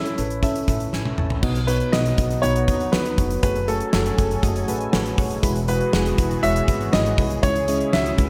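Polished and lightly roomy, this nostalgic, uplifting 1980s-style pop excerpt at 120 BPM sets a present baby grand piano melody with delay over round, warbling electric-piano-like synth keys with chorus, a woody pizzicato upright bass and an up-front gated 80s drum kit with a fat snare, tight kick and bright cymbals, whose fill at 0.9 seconds leads into a lush, detuned unison pad with chorus and phaser that enters in the background at 1.4 seconds as the chords move through A, B, F#madd9, Eadd9 and C#m.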